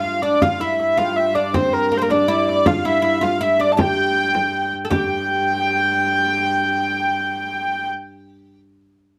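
A nasal, up-front hurdy-gurdy leads this mysterious, driving medieval dance in 6/8 over a woody, double-strung oud second line, a distant, ringing viola da gamba drone and a close, dry frame drum, with a mellow, chiffy tenor recorder entering in the background at 0.4 s, the drum dropping out at 5.1 s and the oud continuing alone until 8.6 s in light reverb, a passage cut from a longer piece.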